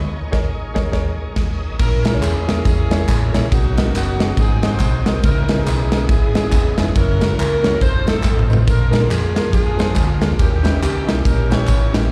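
Uptempo gospel at 140 BPM with a swung 4/4 feel, this short cut carries a solemn, soulful mood and sounds like a live gig heard through the venue's PA, with small-room ambience and recital-hall reverb. It opens with a band accent as a warm string section holds soft-attack, sul tasto chords in the background until 1.8 seconds, when a bright saxophone section takes the melody with light vibrato and a smooth, jazz-style top. Underneath, a clear, worn grand piano accompanies with slapback echo, while a shouting tonewheel organ sits further back, lightly overdriven with key click, chorus vibrato and a slow rotary speaker. A dark, round hollow-body electric bass and a punchy, polished acoustic drum kit sit up front, the kit's bright cymbals and medium-tuned snare featuring a fill around 8.2 seconds. Tambourine, tube shaker and group handclaps enter with the saxophones, sounding distant as if in a large room, with their own slapback echo. 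The harmony moves through rich extended chords such as A#m7b5, Bmaj9 and C#m9 before settling on a tense D#7b9b13.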